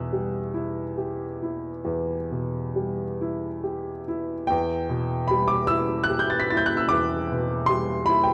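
A classical romantic nocturne for solo piano, this brief fragment from a longer piece carries a yearning, wistful mood. An upright piano plays alone throughout its 8.3 seconds, its tone clear, woody and smooth with a vintage character and long sustain, sitting up front in the mix. The music moves in 12/8 with rubato phrasing, spanning from E2 up to B6 and resting on an E minor harmony. A moderate reverb of a large studio surrounds the instrument, and the overall production leans dark. The passage opens with one section and shifts to a contrasting one at 4.5 seconds.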